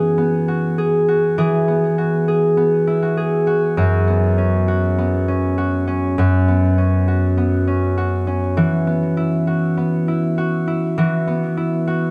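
Playful and hopeful, this short folktronica excerpt moves at 100 BPM in a straight 4/4 in E major. A solo concert harp carries the whole 12.1 seconds, its fingerpicked tone warm, ringing and up front, with a delay on its notes, as it moves through Eadd9, Bsus2/F# and Esus2. The studio ambience is wet, giving the harp a short tail.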